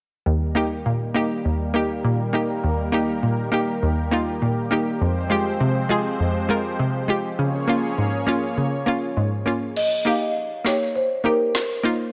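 A straight 4/4 dancehall groove, hypnotic and bouncy, drives this cut from a longer piece, with a hollow, detuned square-wave pluck and a thick, nasal sawtooth unison pad, both under chorus, moving through Eb, Fmadd9 and Db6 until the pad stops at 9.7 s and, at 9.8 s, an airy, up-front marimba melody with delay arrives alongside an electronic afro-pop kit of crash cymbal, finger snaps and woody snare, the mix sitting in a lush hall reverb.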